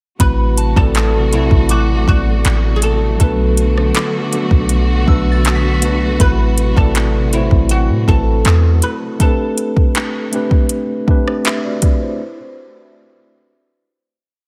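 Contemporary R&B at a slow 80 BPM in A dorian, moody and longing, where a woody, plectrum-plucked oud sings short motif phrases through analog delay over mellow tine electric piano chords with grace notes and fills, lush bowed strings whose sustained pad pumps with sidechain until 9.2 seconds, a deep, boomy 808-style bass holding long sliding sub notes that follow the kick, a sparse, overdriven drum kit of soft kick, metallic hats, handclaps and rim clicks up front, and scattered FM bell notes glinting in the background through chorus and delay, set in a light reverb.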